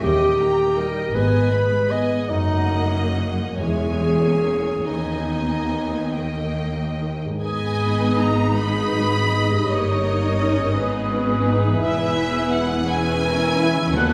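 A slow, rubato romantic orchestral passage in G# minor and 6/8 opens with the full string body, clarinet and harp sounding together, its mood melancholic and elegiac. Violins carry the melody with a smooth, even vibrato, while a second, more distant violin line and a solo clarinet of classical poise weave supporting voices above the viola section's soft-attacked, expressive accompaniment. Beneath them, clear-toned cellos and bowed double basses hold the bass in the background, and a mellow concert harp rings out its arpeggios. At 7.4 s a large flute ensemble enters with a pure, crisp-edged line high above, and at 8.2 s a loose French horn section adds sustained chords in the background. Just before the cut, at 13.9 s, a round timpani stroke on calf heads sounds with soft mallets. The whole is bathed in a recital-hall reverb that lends the lush ensemble a spacious, church-like bloom.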